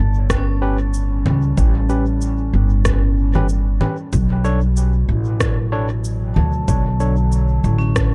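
A woody pizzicato upright bass sits up front in this hazy, meditative ambient dub excerpt, moving in B minor at 94 BPM in 4/4 with a 16th-note swing. Behind it, a warbling, nostalgic tape-like pad holds sustained chords with a slow attack and long release, its detuned, lo-fi tone softened by chorus and its own reverb in the background. A vibraphone played with medium hard mallets, motor off, rings out metallic arpeggios through dub echo. From 0.3 seconds, a deep, layered electronic kick with overdrive arrives alongside overdriven electronic rim clicks, cabasa and congas, which carry dub echo and were re-recorded in a large room. At 0.6 seconds, a bright, barky, gritty tine electric piano adds overdriven stabs through a combo amp, also fed into dub echo, while the harmony shifts from A7 to Bm7 at 4.1 seconds within a dark, warm, fairly dry mix.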